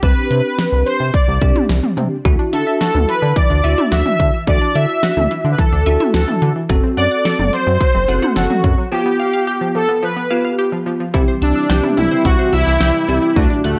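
A straight 4/4 pulse at 108 BPM drives this driving yet melancholic synth-pop clip, with a punchy, up-front electronic pop kit of fat snare, metallic hats and toms beside a glossy, chorused synth bass. Over a bell-like tine electric piano, a bold, brassy analog synth lead carries the melody with vibrato, chorus and tape echo, while a round, detuned analog pluck adds quieter arpeggios from 2.3 seconds. At 11.1 seconds, as the chords settle on C, a resonant, evolving pad swells in softly behind everything else, all in light reverb.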